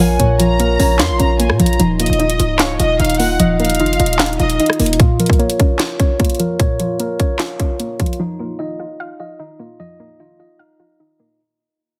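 The hard-hitting 808-style bass stands out first, punchy and heavy with a fast attack and decaying tail, sitting up front beside an electronic trap drum kit of hard-clipped kick, sharp snare, metallic hi-hats, handclaps and rim clicks. This melancholic, eerie trap cut runs at 150 BPM in 4/4 with a half-time feel in Bb minor, moving between Bbm and Ebsus2. A soft, round, dark pluck with chorus carries the accompaniment, while a mellow, clean tine electric piano plays delayed arpeggios through its built-in speakers. A lush studio violin section adds a smooth, vibrato-laden second line with delay, heard only until 4.6 s, and the bass drops out at 5.0 s as the passage begins to fade. The drums stop at 8.2 s, leaving the pluck and electric piano to fade together under light digital reverb and a heavily compressed, radio-like sound in this fragment cut from a longer piece.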